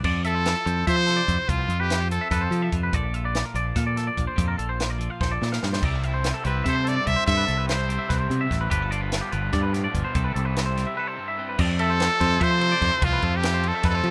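A bright, punchy trumpet leads with a vibrato-laced pop melody in three short phrases, over a growling, overdriven fingered bass that sits up front. This wistful, intricate math rock and midwest emo excerpt moves at 291 BPM in 7/8, with a twangy electric guitar spinning delayed arpeggios, a bright, twangy twelve-string guitar in the background, and a dry cocktail drum kit with a high-tuned snare and dark cymbals. A lo-fi, double-tracked garage guitar riff enters at 5.8 seconds, and after a break a new section begins at 11.6 seconds, all in a rough home-demo sound.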